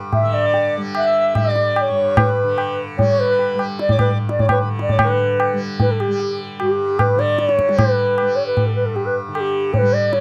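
A softly plucked tanpura drone opens this short excerpt of Hindustani classical music, its buzzing, shimmering tone sitting low beneath everything that follows. Almost at once a bansuri takes the melody, its pure, hollow bamboo voice carrying vibrato and tongued notes up front, alongside a high-tuned tabla with a short ring, close and dry. A reedy, breathing pedal harmonium adds a quiet second line in the upper register until about 5.1 seconds, as the music moves into a new section at 5.0 seconds. Set in raga yaman on G at 150 BPM in a seven-beat cycle, the piece gradually speeds up across its 10.2 seconds while keeping a meditative, serene mood. The sound is a close 1970s-style studio recording with light reverb.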